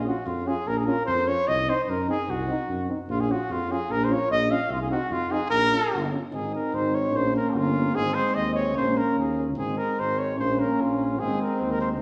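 A dark, vibrato-laden trumpet melody and a close-miked tuba bass open this fiery, restless Balkan brass band excerpt in a swung 2/4, joined at 0.1 seconds by a clear, vibrato-tinged French horn and a mellow trombone in the background, all played in a classical style within the lingering reverb of a church or concert hall, with the harmony shifting to a new section at 6.3 seconds.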